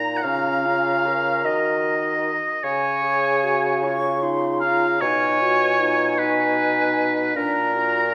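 A slow, romantic movement for wind quintet opens with all five players sounding together from the first moment, a melancholic, yearning passage cut from a longer piece. In a rubato 6/8 at about 51 beats per minute, the airy silver flute carries the melody high in its range, its soft attack and expressive vibrato giving the line a gentle glow. Just beneath it, the oboe sings a second line up front, smooth-topped with a light vibrato and a keen brightness that makes it the most present voice. The dark, distant clarinet and the mellow French horn hold the accompaniment in the background, while the bassoon anchors the bass with a rounded, roomy tone and its own vibrato. The harmony drifts from Db through Ebm and Abm/Cb before settling on Bb near 7.3 seconds, and a wet scoring-stage reverb lets the ensemble bloom through the brief 8.1-second passage.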